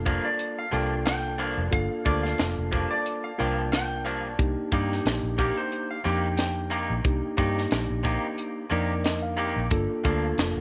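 Light reverb and a small-room ambience frame this smoky, mournful soul-blues excerpt in G minor, moving at 90 BPM over a straight-eighth 4/4 feel as the harmony shifts between Gm7 and Cm7. A tight funk drum kit sits up front with a high-tuned snare, beneath a round, foam-muted vintage bass and mellow tine electric piano comping. A bright, twangy guitar through a small old amp adds slightly broken-up, lo-fi stabs bathed in spring reverb. A dark, clean lap steel played with fingerpicks carries the slide line until 7.7 seconds, and the electric piano slips in a short fill at 8.4 seconds.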